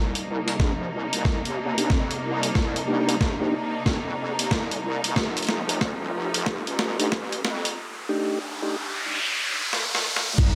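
A gritty, up-front sampler sound with a light reverb frames this funky glitch hop excerpt, a build-up from a longer piece that swings its sixteenths over Cm9 and then F7 at 5.2 seconds. A heavy, saturated wobble bass of detuned square and sine waves in unison, thickened by chorus, runs beneath a bright, intense studio string section holding bowed chords with vibrato, its sound pumping against the sidechain and darkened by a low-pass filter. The loudest part is a compressed, thumpy electronic kick, joined by a boom bap sampler kit with a high-tuned snare, hi-hat and crash cymbal, both re-recorded in a large room, with drum fills filling much of the passage. A soft, flute-like tonewheel organ plays mellow stabs from 1.8 to 8.8 seconds through a slow rotary speaker, tape echo and a filter sweep. Electronic effects carry a riser through the whole build, add a noise sweep from 7.8 seconds and land on an impact at 10.4 seconds.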